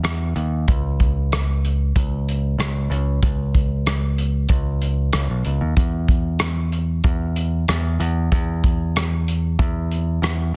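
Warm and open-road in feel, this short folk rock and heartland rock excerpt moves at a straight 94 BPM in 4/4, with a picked electric bass sitting low between B1 and E2, direct and up front, beside a loose indie drum kit of hi-hat, tight kick and rim click that sounds acoustic and small-roomed, its snare soft-clipped, both playing from the start to about 10.5 seconds in a dry, dense, heavily limited modern mix.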